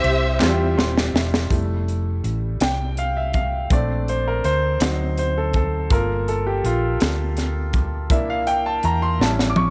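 Slow gospel in 6/8 at 54 BPM in F major, this uplifting, jubilant excerpt opens with a lush, vibrato-rich string section carrying the melody until 0.8 s, while a band-limited, vintage group handclap sounds briefly in the background. A clear, intimate baby grand piano with audible action noise plays a fill alongside a drum fill, then takes a solo from 1.5 s over Fmaj7, Bbmaj7, D7b9, Gm7 and C7 before landing on A7. Beneath it sit a round, dark hollow-body electric bass and a punchy acoustic fusion kit with a high-tuned snare and a pumping small-room sound, all set in light reverb.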